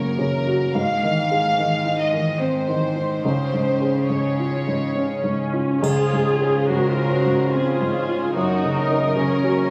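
An up-front baby grand piano carries the accompaniment in this hopeful, moving cinematic film-score fragment in Db major, unfolding in a rubato 3/4 at 72 BPM over Gb, Ab and Dbmaj7 harmonies. An intimate chamber violin section sings the melody with light vibrato and a soft sul tasto touch, while a rich, floating cello section holds the bass; a dark, woody viola section joins up front and lush at 4.9 seconds. At 5.8 seconds a pure studio violin section adds a second line, a very quiet symphonic double bass section deepens the low end, and a triangle glints briefly until 7.5 seconds, all set in a moderate concert-hall reverb with a compressed, phone-captured room sound.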